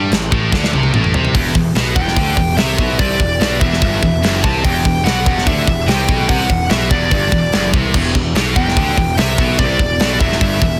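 Heavy metal at 146 BPM in E minor, epic and dark, cut from a longer piece, where a tight, gritty, up-front drum kit with clipped kick plays a fill from 0.5 to 1.4 seconds while a growly fuzz bass and two high-gain rhythm guitars, one of them scooped, churn out the riff in the background. A bright lead guitar with digital delay enters at 2.0 seconds to carry the melody, and a very quiet bowed chamber string section holds sustained chords beneath the dense, heavily limited mix.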